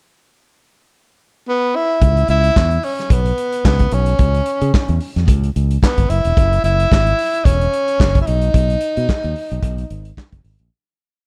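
A four-on-the-floor beat with lightly swung sixteenth-note hi-hats drives this short, sultry, danceable disco piece, the snare doubled by handclaps over a punchy kick. The breathy tenor saxophone opens alone at 1.5 seconds, and the vintage kit and fingered electric bass join together at 2.0 seconds. The bass is bright and direct, playing a syncopated disco line up front. The saxophone sings an intimate, whispered melody built from short song-like motifs, with a soft attack, light vibrato and a slapback echo. The drums sound smooth with a rolled-off top in a small room, the overall production is dark, and the harmony moves from C#m7 through F#5 to B before the piece fades out from 8.5 seconds.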